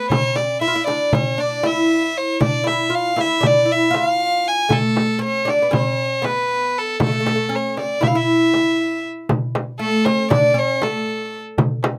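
This Turkish makam ensemble piece in a straight 9/8 feels stately and warm, and it is cut from a longer work. A single bowed violin carries the melody up front, played sul tasto with a soft attack that gives it a pure, floating, rich tone. Beneath it, a fretless oud plucked with a plectrum adds a second line, its double strings sounding bright and woody. A metal-shell darbuka played with soft hands brings a crisp, close pulse, while a small frame drum, also struck softly, sounds bright, close and dry. The music shifts into a new section at 9.3 seconds, and once the violin and oud stop at 11.4 seconds, the two drums carry on alone to the close, all set in a light reverb.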